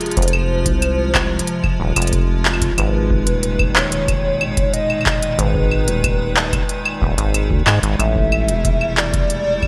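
A warbling, nostalgic lead carries the melody over an icy, crystalline pad with chorus and built-in reverb and an up-front, overdriven organic electronic kit of claves, handclaps and smooth hi-hats, joined at 0.2 s by a rubbery, saturated acid bass and a deep electronic kick re-recorded in a large room, in this melancholic, eerie 92 BPM IDM excerpt that moves from Fm to Abmadd9 to Am7 with bright 1980s-style digital production and light ambience.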